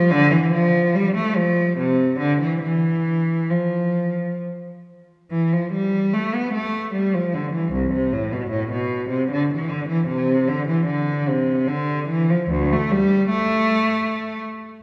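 In an unhurried 3/4 with a flexible rubato pulse around 65-80 BPM, this baroque-style suite movement for unaccompanied cello unfolds in F major with a radiant, flowing mood. A single bowed cello plays from 0.0 to 14.4 s, its rich, smooth, even tone colored by vibrato across a low register from C2 to B3. The long concert hall reverb and a listening position further back in the room give the sound a spacious, resonant glow, and the passage is cut from a longer piece.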